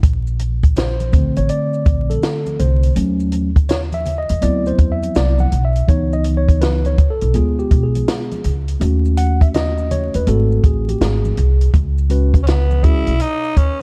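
A dark, crackling production frames this cool, nocturnal jazz-hop excerpt at 82 BPM in C# minor, where a dry cocktail kit with vintage sampler grit and a woody pizzicato upright bass drive a swung groove under very quiet maracas and congas, a mellow tine electric piano solos from 0.8 seconds over shifting jazz chords, and a raspy, growling tenor saxophone with scooped notes enters at 12.4 seconds.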